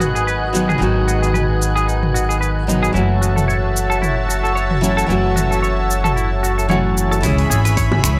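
Sunset chillout in F# dorian at 112 BPM, swung on the sixteenths, with a smooth, wistful mood in this short fragment of a longer piece. A fingerpicked nylon-string guitar carries the accompaniment with a bright, full-bodied tone and analog delay. Beneath it, a woody pizzicato upright bass sits up front, while a lush, detuned unison pad holds sustained chords through chorus. A clean, compressed electric guitar plays arpeggios with its own analog delay, and a deep house drum kit of cabasa, finger snaps, dark hi-hat and toms keeps the groove. A breathy, wind-like noise texture hovers in the background with built-in reverb until 7.2 seconds, when the harmony moves from G#m7 and F#m7 to C#m7, a deep electronic kick enters, and low-tuned bongos appear briefly at 7.9 seconds. A filter sweep on an analog synth pad runs through the opening, and the whole has a dry, gritty character set in digital ambience.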